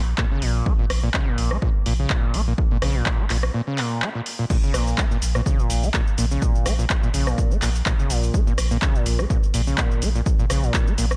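Raw and trippy, this dry acid house excerpt at 125 BPM in 4/4, with a light swing on the 16ths, holds on a Bb minor chord as a deep, round sine sub bass with tube saturation and sidechain pumping anchors the low end beneath a squelchy, gritty sawtooth acid bass riff whose resonant filter plucks snap and decay through distortion, analog chorus, cassette tape color and analog delay, while an up-front punchy electronic kick and an analog drum machine of cabasa, crash cymbal, handclaps, hi-hat and rim click, both re-recorded in a large room, drive the groove around a brief break from 3.5 to 4.5 seconds.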